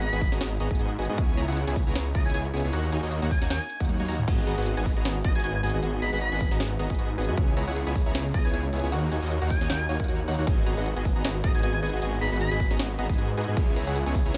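Lush and dreamy, this future bass excerpt in a swung half-time feel sets a buzzy, distant muted trumpet melody over punchy supersaw stabs pumping with dub echo, a thick, chorused detuned saw bass up front, a layered, tape-warm electronic kick, a trap kit of sharp snare and crisp hats with a drum fill at 3.9 seconds, and a very quiet, round pluck arpeggio entering at 4.3 seconds, all in a dry mix.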